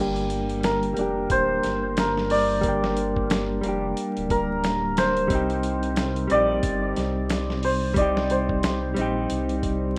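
A rough home-demo mix sits under a film of vinyl crackle, with light reverb and a digital ambience that give this cinematic, hypnotic trip hop excerpt a lo-fi haze. A clean, direct-recorded electric guitar plays accompaniment up front, its picked, compressed tone colored by harmonic tremolo, 12-bit sampler grit, a low-pass filter and a filter sweep that runs throughout. Beneath it, a dark detuned saw bass rumbles deep and sustained, its beating sawtooth-and-sine tone giving the low end a brooding weight. A dusty soul sampler-style drum kit enters at 0.2 seconds, with a thumpy kick, a medium-tuned snare and hi-hat in a gritty, compressed, swung groove. From 0.6 seconds a hammered santur carries the melody, its shimmering, ringing tone roughened by sampler grit and trailed by tape echo. The harmony moves from one minor chord to another at 5.3 seconds, keeping the mood suspended and trance-like.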